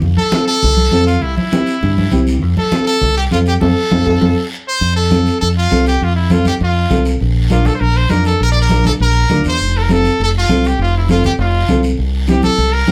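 A brilliant, forceful trumpet with light vibrato carries the melody from 0.2 seconds, up front yet roomy, over a joyful, danceable cumbia groove built on a round, punchy fingered electric bass and damped, thick-skinned congas, with a raspy guiro in the background. A dark, woody, slightly detuned upright piano adds boxy, mellow accompaniment, and the band hits an accent with a short fill just before the music moves into a new section at 4.8 seconds. The whole ensemble sits in a wet small room, heard from further back, in this cut from a longer piece.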